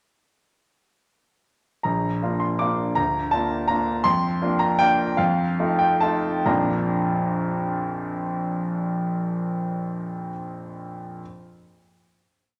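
Playful and sparkling, this classical piano waltz in Bb major moves in a rubato 3/4 at 128-170 BPM, with a clear concert grand piano playing solo from 1.8 to 11.2 seconds. A single-line melody sits up front over a waltz bass with deep low notes, while the intimate sound carries audible action noise and long sustain inside a wet recital hall. The harmony passes from Bb through Bb/D and Bb/F to F7, slowing down from 3.5 seconds before settling on a final Bb chord at 6.5 seconds.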